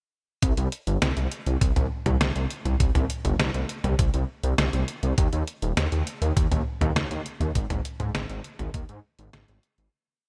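This short synthwave piece in C minor moves at 101 BPM in a straight 4/4, with a moody, driving feel. A thick, detuned sawtooth bass carries it from 0.4 seconds, playing a sequenced sixteenth-note line between Eb1 and Ab2. The bass sits up front with a saturated, chorused sheen. Alongside it, a thumpy, sampler-style electronic kick holds the pulse until 8.9 seconds. A detuned 8-bit drum machine adds closed hi-hat, low tom and a medium-tuned snare in an 80s backbeat, its tape-softened tone sounding as if re-recorded in a small room. Light reverb and a dark top end frame the whole verse, which fades out from 6.8 seconds to its close at 9.9.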